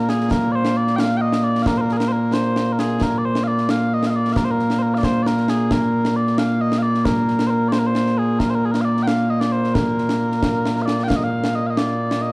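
Stirring and ceremonial, this cut from a longer piece of Scottish pipe music moves at 89 BPM in a straight 6/8 in Bb mixolydian, tuned to A4 = 438 Hz. Mellow small bagpipes carry the melody up front as a sweet, continuous solo with vibrato, spanning Bb2 to G5 and touched by a slapback echo. Behind them, an acoustic concert snare drum and concert bass drum with dark cymbals sound from a small room, set back under a wet scoring-stage reverb in a dark production, and the music shifts into a new section at 11.1 seconds.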